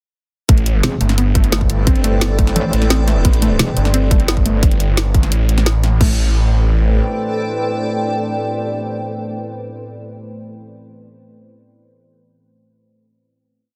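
A snarling, growling distorted saw bass drives this aggressive, dark technical drum and bass piece in A minor at 174 BPM, playing chopped phrases from 0.5 s, while a metallic FM wobble bass with changing wobble speed answers it until 3.8 s, all over a tight, up-front broken-beat kick and a drum kit of woody snare, bright hats and crash. Beneath them, a lo-fi, warbling pluck repeats a 6-step loop that drifts against the bar in the background, a deep, moody pad holds sustained chords, and a cloudy granular pad with slowly shifting chords floats higher, with sidechain pumping on these three. After the drop ends at 6.0 s, the two pads carry a final chord in a dense, heavily limited digital ambience.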